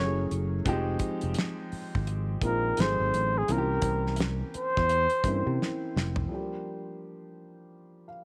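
Late-night and sultry, this brief neo-soul R&B excerpt with a gentle 16th-note swing sets a breathy, whispered flugelhorn melody with light vibrato and tape echo over a dark, mellow concert grand piano with audible action noise, a growly, punchy fingered electric bass and a damped 70s drum kit with a fat snare and tight kick, moving through lush ninth and altered seventh chords until a drum fill at 5.6 seconds leads into a short closing passage where the piano carries on alone to 8.2 seconds.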